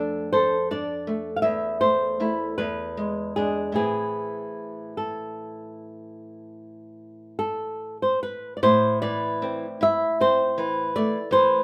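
Unfolding in a rubato 12/8 sway, this solemn, elegiac romantic duo for two guitars moves through Dm/F, Am/E and E7 before settling on Am. Up front, a fingerpicked flamenco guitar carries the melody in a warm upper register, while a small-sounding, fingerpicked nylon-string guitar supplies the lower accompaniment. Light reverb surrounds the pair throughout this short passage, which is cut from a longer piece.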